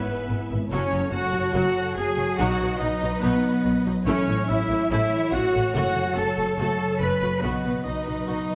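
Cinematic orchestral music, heroic and triumphant at 143 BPM in 4/4, with a lush violin section carrying the vibrato-rich melody over a second violin line, a lightly vibrato oboe, a clear, distant clarinet, a smooth, even background viola bed, mellow sustained French horn chords, ringing thumb-plucked harp arpeggios, a rich, focused cello section and a double bass section entering at 0.3 s, all set in the roomy wash of a scoring-stage reverb across this brief excerpt.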